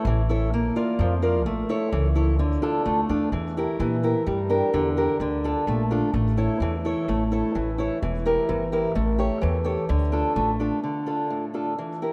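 A fingerpicked acoustic archtop guitar, boxy and up front with audible finger squeak, opens together with a thumpy pizzicato upright bass on gut strings, setting a tense, dramatic Greek folk mood in D harmonic minor at 128 BPM in 2/4. The guitar's chords move through A, Bb, Dm, Edim, Gm and A7 over the bass's woody low end, all bathed in a vast, echoing cathedral reverb. The bass drops out at 10.7 seconds, and the guitar carries on alone until this fragment of a longer piece cuts off at 12.1 seconds.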